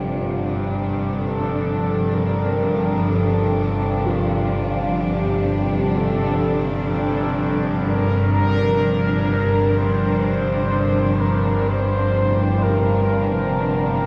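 Unmetered and floating in free time, this fragment of a longer dark ambient drone piece feels desolate and unsettling. A bowed studio cello section holds sustained chords throughout, its focused, vibrato-laden tone sitting up front with a smooth top. Beneath it, an overtone-sweeping drone of sawtooth and sine layers blooms with a slow attack and long release, resonant and chorused in its own reverb. At 1.2 seconds a mellow, horn-like synth lead enters with a round, detuned sawtooth melody, softened by subtle chorus, shimmer reverb, diffuse delay and a filter swell. Very quiet, vintage church bells ring bronze arpeggios, clangorous and beating with an iron clapper, until 4.4 seconds and return at 12.2 seconds. A cathedral reverb of 6.0 seconds drenches the whole in a dark, warm production.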